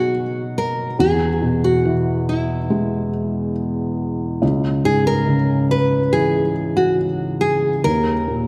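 A nylon-string guitar and a felt-muted upright piano begin together in this hopeful, heartfelt pop excerpt, moving at a slow 70 BPM in a straight 4/4. The fingerpicked guitar carries the melody in a bright, classical voice, sitting up front with small finger squeaks audible as it plays in a narrow range between E4 and B4. Beneath it, the upright piano supplies a soft, intimate accompaniment from C#2 up to D#4, its thick felt giving a mellow, muted tone while the noise of its action comes through close to the listener. The harmony moves from B to E, then to C#m at 4.4 seconds, and closes on a D#5 chord. A lush concert hall reverb and a dark production lend the short passage a tender, spacious glow.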